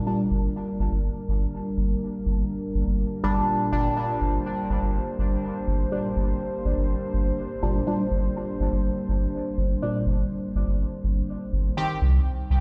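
Dub techno at 123 BPM in a straight 4/4, this hazy, hypnotic excerpt cut from a longer piece sits on G minor before shifting to C minor at 11.8 seconds. A dark analog pad holds sustained chords throughout, its detuned sawtooth and triangle tones with a sub octave blooming slowly under chorus into a moody, shadowed bed. A resonant sweep polysynth blips briefly at the start, then returns from 3.2 seconds with juicy, wave-folded stabs, a filter sweep running across the passage while chorus, phaser and dub echo trail each hit. Beneath them, a pure sine sub bass enters at 0.3 seconds, clean and smooth, sitting up front as the deepest layer. The whole mix carries light reverb and the air of a big sound system in a bare room, wrapped in large studio reverb.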